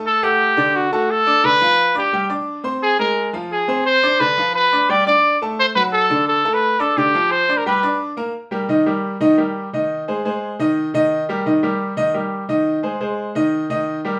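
A punchy, vintage-toned trumpet with scooped notes carries the melody up front until 8.0 seconds over a brilliant, open baby grand piano in this danceable, driving latin excerpt at 174 BPM, the piano continuing alone as the harmony shifts from D and G7 to Eb and Ab/Eb at 8.3 seconds, all captured as a band playing live in one room with a wet studio reverb.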